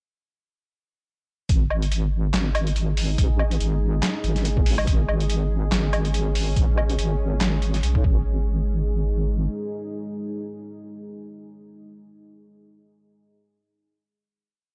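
Deep dubstep with a brooding, cavernous mood, built on a half-time groove with a light swing on the sixteenths. The drop arrives at 1.5 seconds, led by a thumpy, gritty electronic kick and a pitched-down, sampler-style trip hop kit of snare, closed and open hi-hat, low woodblock, and handclaps, both tape-tinged and re-recorded in a small room so they sit up front. Underneath, a deep, saturated wobble bass mixing square and sine tones rolls through modulated phrases with changing wobble speed, thickened by chorus. From 2.5 seconds a moody, detuned sawtooth pad with a sub octave fades in slowly, holding sustained chords bathed in chorus and its own reverb. The drums stop just before 8.3 seconds, when a final hit lands and the pad rings on with its long release until 11.2 seconds, all within a dark, warm production touched by light reverb.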